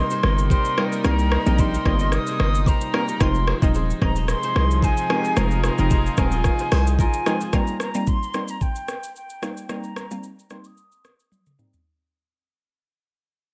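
Afrobeats at 111 BPM in 4/4, with a light swing on the sixteenths and a hypnotic, smooth mood, cut from a longer piece and moving from Cm7 to Fm7 and back to Cm7. A punchy, heavy 808-style bass with a fast attack sits up front beside an electronic afro-pop drum kit, whose knocking kick, metallic hats, rim click, shaker and toms were re-recorded in a large room. An airy, expressive concert flute carries the melody with vibrato through a low-pass filter and digital delay, sounding distant, while a tight horn section with light vibrato plays a second line, also with delay. Beneath them, a bright fingerpicked kora rings out a crisp riff in the background, gut-string chamber strings hold reedy sustained chords, and a glassy, crystalline wavetable pluck with chorus adds accompaniment from 0.8 seconds. From 7.5 seconds the bass, horns and strings have dropped out, a filter sweep and fade-out begin, and a drum fill closes the passage at 11.3 seconds under generous studio reverb.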